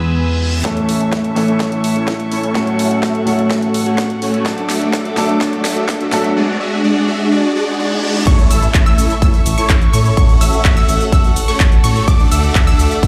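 A punchy, overdriven electronic kick sits up front in this anthemic, triumphant festival progressive house excerpt at 126 BPM in A major, alongside a huge-snare big-room kit through a build-up where lush, phaser-tinged supersaw chords move through a filter sweep over a menacing detuned saw bass, brilliant grand piano until 6.4 s and earthy chamber strings, before the drop at 8.3 s brings an impact and mellow, wave-folded unison pluck arpeggios, all set in a large studio reverb.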